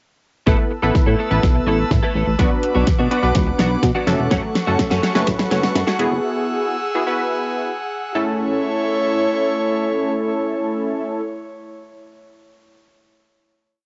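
A straight four-on-the-floor pulse in 4/4 drives this short, upbeat and euphoric dance-pop piece, where a punchy electronic drum kit with fat snare and metallic hats, a nasal, glossy chorused synth bass playing a syncopated line with muted ghost notes, and a choppy, clean direct-recorded electric guitar riff build alongside a funky, detuned polysynth comp and an airy, breathy pad, with cassette-tape grit on the drums, guitar, comp and pad and a touch of light reverb, until the drums, bass and guitar drop out after about 6 seconds and the comp and pad hold a final chord from 8.2 seconds.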